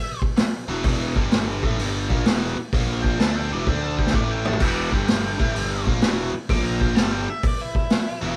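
A swung 4/4 groove at 128 BPM drives this smoky, gritty blues rock and southern rock cut in E minor, lifted from a longer piece. The vintage acoustic drum kit sits up front with a tight kick, a medium-tuned snare, dark cymbals on crash and hi-hat, and toms, its saturated, rolled-off sound adding grit, and a drum fill lands between 3.7 and 4.6 seconds. A biting, double-tracked overdriven guitar plays the picked riff in the low register, joined by a growly, brilliant-toned fuzz bass played with a pick. The octave-fuzz lead guitar, dark and distorted, makes a brief appearance at the very start and then returns at 3.0 seconds for a solo reaching up to D6. The harmony moves between E5, G5, A#5, D5 and A5 power chords around an E minor centre, and the trio sounds like a band playing live in one room with light reverb.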